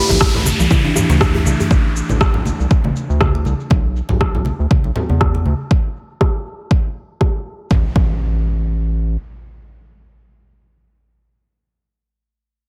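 A swung groove opens this afro house excerpt, carried by a deep, overdriven electronic kick drum sitting up front, with a layered electronic shaker and rim click that also carry overdrive and run through a filter sweep. Bright, compressed congas played with soft hands and a tight, cracking djembe with metal rattles, kept very quiet, add acoustic texture beneath the electronic drums. A round analog bass with a fast attack and mellow, wave-folded tone pumps with sidechain compression and holds on until 9.2 seconds. A woody, ringing kalimba plays dark, smooth arpeggios through a low-pass filter and analog delay before dropping out at 1.6 seconds. The shaker and rim click stop at 7.7 seconds, where an electronic downlifter and impact mark the shift into the closing section. Light reverb and digital ambience give the piece a warm, spiritual mood.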